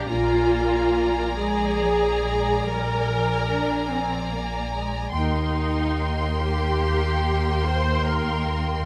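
Lightly reverberant, this brief passage from a slow romantic movement for string orchestra unfolds in a melancholic, elegiac 12/8 with flexible rubato: a focused, vibrato-rich chamber violin section sings the high melody over a second violin section shaded with expressive portamento, while a clear, distant viola section offers lush accompaniment, and a smooth, even cello section joins an up-front double bass section with light vibrato in anchoring the bass as the harmony moves from Bb7 to Eb6.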